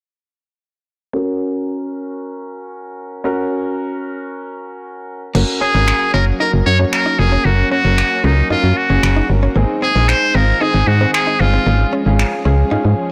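Dance-pop at 114 BPM in F# major, summery and euphoric, cut from a longer piece and carried by a blown-out, overdriven sound with light reverb. A warm baby grand piano opens alone at 1.1 seconds, its open, long-sustaining accompaniment passing through a low-pass filter sweep before bass, drums and guitar arrive at 5.3 seconds. There a punchy, round FM bass sits up front with fast-attack, decaying notes, while a layered deep house drum kit, overdriven and re-recorded in a small room, adds crash cymbal and finger snaps over a soft-clipped snare. A clean, direct-recorded electric guitar plays a compressed, picked riff in the background through lush chorus. Moments later, a silky string machine with slow attack and warbling ensemble chorus holds sustained chords beneath. Up front, a brilliant, buzzy trumpet with a metal mute takes the solo melody with vibrato, scooped notes and delay, as the harmony moves from F# to G# and then C#/G#.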